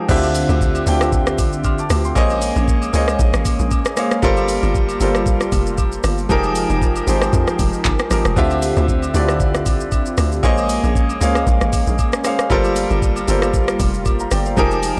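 Soulful and late-night, this amapiano excerpt drops straight into its groove at 0.1 seconds, with a gently swung sixteenth-note feel. A clear, intimate grand piano sits up front, its long sustain and audible action noise giving the polished chords a close, present quality as they move through Dm11, Bbm11, Gm11 and Fm11. Beneath it, a smooth, detuned sawtooth analog pad holds mellow sustained chords in the background, softened by chorus and pumping against the beat through sidechain. The tight log drum bass is punchy and percussive, an FM tone with a noise layer, a fast attack and a decaying tail, while the electronic afro-pop kit sits up front with its knocking kick, warm, tape-warm hi-hats, handclaps, rim clicks, shaker and crash cymbal. Acoustic, vintage-sounding agogo bells and woodblock add band-limited color far back in the mix from 0.2 seconds, all within a gritty, dry hardware character and a digital ambience.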